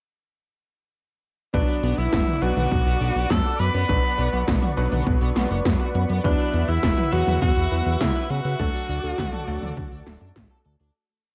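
Synthwave in B minor at 102 BPM, cinematic and nocturnal, where a clear tenor saxophone with vibrato and scooped notes carries a motif-based, jazz-style melody doubled in unison by an airy, dreamy detuned lead, over a fat sequenced sixteenth-note analog bass, a punchy overdriven machine kick and an 80s backbeat of metallic hats with gated snare and toms, while a silky string pad, a very quiet tine-like synth pluck arpeggio drifting against the bar, clangy electric grand piano stabs and a biting double-tracked guitar riff sit in the background of a cassette home recording that moves from Bm to Esus2 to D before fading out from 7.8 seconds.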